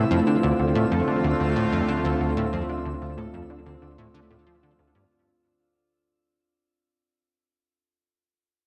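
Ambient, sequencer-driven space music with an expansive, mysterious mood, fading out from its opening moment as a punchy, funky sawtooth bass riff with a filter pluck sits up front beside a bright, detuned resonant pad holding sustained Dm7 chords, while fingerpicked concert harp arpeggios ring in the background until 7.5 s, a mellow pulse-width-modulated drone enters at 1.1 s, and a twinkling granular texture adds octave-up shimmer high above, set in a wet concert-hall reverb.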